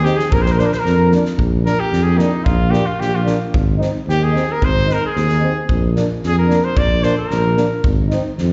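Wild and virtuosic, this Balkan brass band fragment in 2/4 sets a clear, up-front trumpet with light vibrato and slapback echo over a dark, close-miked tuba bass, with a mellow flugelhorn second line that drops out at 1.1 s, a vintage-toned euphonium in the background and a distant, roomy trombone both adding accompaniment touched by slapback echo, and a loose acoustic drum kit with punchy kick and fat snare, while the trumpet takes a solo from 1.4 s and the band is heard as a live gig through the venue's PA with recital-hall reverb and a dulled top end.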